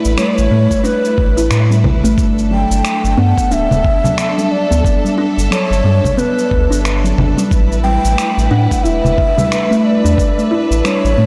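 Organic downtempo with a peaceful, earthy mood, this short passage, cut from a longer piece, sits on a relaxed swung groove. A round, deep analog bass sits up front with tube saturation and sidechain pumping, while a lush bowed string section holds sustained chords with vibrato, its pumping and shimmer reverb tying it to the low end. A buzzing kalimba spins woody, hollow-box arpeggios through digital delay and shimmer reverb, and a breathy low ney carries the melody from 0.2 seconds with vibrato and lifted highs. Gritty, sampler-style shaker, finger snaps and congas run throughout, with soft clipping on the snare, and a thumpy electronic kick joins at 0.7 seconds and drops out at 10.3 seconds. Far in the background, a glassy texture of drifting overtones adds chorus and shimmer, while the harmony moves from A7sus4 to Gmaj7 at 2.2 seconds and back. The whole recording is blown-out and overdriven, with a light digital ambience.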